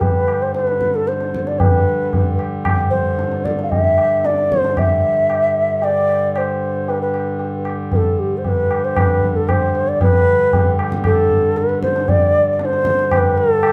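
The bansuri leads this Hindustani classical excerpt, its pure, bamboo tone close and up front, shaped with vibrato and a crisp attack as it carries an expressive melody between G4 and F5. Beneath it, a reedy, breathing pedal harmonium holds a dark, smooth drone low in the register, sitting well back in the balance. The low-tuned tabla rings out in a large-room sound, giving the 4/4 pulse a resonant, acoustic body. Set in raga Khamaj on G at 114 BPM with a straight feel, the performance gradually speeds up across its 13.7 seconds and moves into a new passage at 10.0 seconds. A moderate recital-hall reverb surrounds the trio, lending the devotional, serene mood a gentle sense of space.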